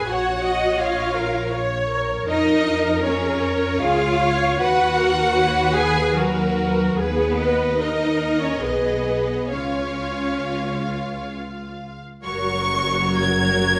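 A serene, tender slow movement for string orchestra in a rubato three-four sway opens with every section bowing together at once: lush, vibrato-rich violins carry the high melody over a warm, smooth-topped second violin line and distant violas; focused, close-sounding cellos and expressive double basses with soft attacks and portamento anchor the bass, all bathed in the wet bloom of a recital hall as this passage, cut from a longer piece, moves into a new section at 12.3 seconds.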